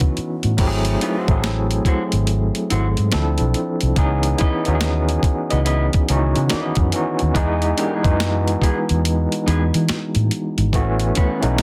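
A swung 16th-note boom bap groove at 71 BPM carries this introspective, late-night R&B and neo-soul cut in C# minor, with the pitched-down, thumpy kick and high-tuned snare of a gritty sampler-style kit up front beside a barky, overdriven tine electric piano with fast tremolo and plate reverb, while a dark, round, foam-muted vintage electric bass sits beneath and, from 1.0 s, a quieter, slightly broken-up lo-fi electric guitar through a small old amp adds a second line in spring and plate reverb over chords moving from C#m11 through Emaj7 to A69.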